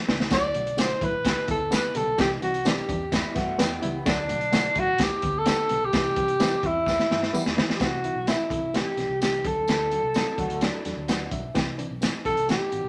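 Driving and passionate, this uptempo 1960s-style soul excerpt moves at 128 BPM in a straight 4/4, with a breathy, mellow tenor saxophone up front singing a vibrato-laced, scooped-note solo over a gritty, saturated breakbeat kit with a tight kick and medium-tuned snare. Underneath, a worn, slightly out-of-tune reed electric piano with tremolo sits in the background, adding fills around 3.1 and 10.6 seconds, while a dark, foam-muted fingered bass holds the low end and a distant, jingly tambourine adds shimmer. A slightly broken-up, lo-fi electric guitar riff appears briefly at 3.1 and 10.2 seconds, all set in moderate studio reverb as the chords move from D through G/D, C and Em before a second section leans on C and D.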